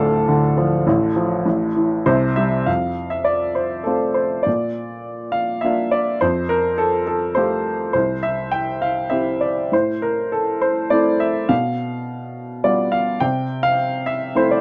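This is a lyrical classical piece for solo piano, a short passage cut from a longer work, in F major at 103 BPM in 3/4 with a relaxed, rubato feel. A single upright piano carries everything from 0.0 to 14.6 seconds, spanning D1 up to G5, and its tone is woody, present and polished, sitting up front in the mix. The opening moves through a brief, shadowed D minor phrase before settling at 2.7 seconds into the second section. There the harmony unfolds gently through F, Bb, Fadd9, C, Am and G7/B, coming to rest on a C6 chord at 13.2 seconds. Light reverb and a dark, warm production give the recording an intimate, unhurried glow.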